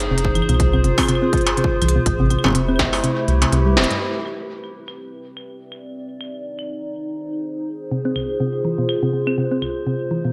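A round, tine-like FM synth pluck spins dark, chorused arpeggios through digital delay in this intricate, glitchy IDM excerpt, falling away midway and returning at 7.9 s. Alongside it, a warbling, detuned tape-like pad holds nostalgic lo-fi chords from Fm through Am7, Cmaj7 and Ab, gaining a filter sweep from 4.0 s, while a deep sine sub bass and a heavy electronic kick anchor the opening before the kick drops out at 3.0 s. An industrial kit of clanging snare, crisp low-passed hats, claves and struck metal ticks along with a light swing, all set in a lush hall ambience with bright 1980s-style digital production.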